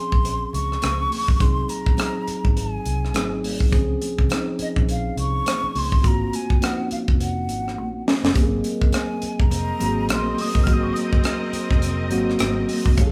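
Tight, up-front funk drums with a high-tuned snare anchor this smooth, lush 1970s-style soul excerpt with a gently swung feel, where a breathy, expressive concert flute carries the melody over mellow tine electric piano, dark, round foam-muted electric bass and very quiet ringing congas; after a drum fill, a soft-mallet vibraphone chimes briefly in the background at 8.4 seconds, a rich bowed string section enters at 9.5 seconds, and the flute drops out at 11.0 seconds.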